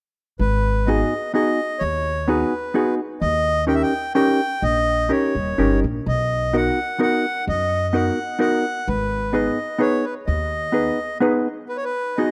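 A reedy, single-reed accordion carries the melody of this nostalgic, bittersweet musette waltz, close-miked and up front with a dry tuning and a full, clear voice. Beneath it, a pizzicato upright bass on gut strings gives a woody, thumpy low end, entering with the accordion at 0.4 seconds and stopping at 10.9 seconds. A clean, fingered hollow-body electric jazz guitar joins at 0.9 seconds as accompaniment, its dark tone also sitting up front. The waltz moves in 3/4 at 128 BPM with a rubato feel in G# minor, passing from G#m7 through D#7 and Bmaj7 before returning to G#m. Light reverb surrounds the rough home demo mix of this fragment cut from a longer piece.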